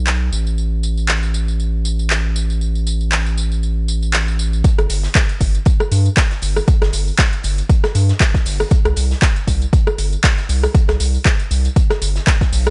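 A reverb-washed mix with its top end gently softened frames this sunny, soulful deep house excerpt at 118 BPM in 4/4, swung 56% on the sixteenths. From the start, a round, sine-like analog bass with a fast attack pumps under sidechain up front, alongside an overdriven electronic kit of handclaps, metallic hi-hats, rim clicks and tambourine in a small room. The drop arrives at 4.6 seconds with a deep, layered, overdriven kick and a very quiet acoustic indie kit of hi-hat and medium-tuned snare in its own pumping room.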